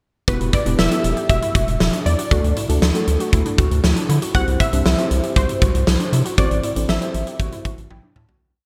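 A straight 4/4 drum-machine beat from a huge arena drum kit, punchy in the kick and fat in the snare under gated reverb, drives this melancholic, cool synth-pop piece, with a round analog bass sitting deep and dark beneath it. A funky polysynth comp carries the motif-based melody with a nasal, detuned bite and a chorus-and-delay shimmer, while muted felt-like synth keys push close-voiced chords and a warbly, dusty pluck repeats a lo-fi arpeggio ostinato in the background over an Em, D, C, Am progression. The bright 1980s-style digital production, bathed in plate reverb, begins fading at 6.4 seconds as the synth keys and then the drums add fills at the close.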